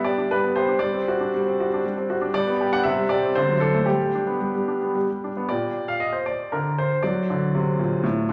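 A clear, intimate baby grand piano sits up front in this elegant, graceful classical-period sonatina fragment in G major, moving in a rubato 3/4 at about 118 BPM, its long sustain and audible action noise carried into a recital-hall reverb of 1.5 s, with a graceful turn to G minor over B-flat at 5.5 s before settling on D7.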